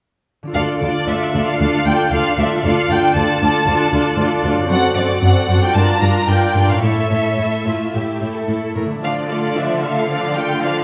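A bright, ringing concert harp opens at 0.4 s with fingerpicked arpeggios set in the background, joined at 0.5 s by a string orchestra in an urgent, dramatic classical passage in D minor at 114 BPM, played with rubato, cut from a longer piece. Up front, a focused violin section carries the melody with vibrato and a smooth top, a second violin line sits beneath it, the violas add expressive accompaniment with portamento, and a rich, even cello section holds the bass. The harmony moves from D minor through D7/F#, Gm7 and A before returning to D minor at 9.0 s, all in a wet recital hall reverb.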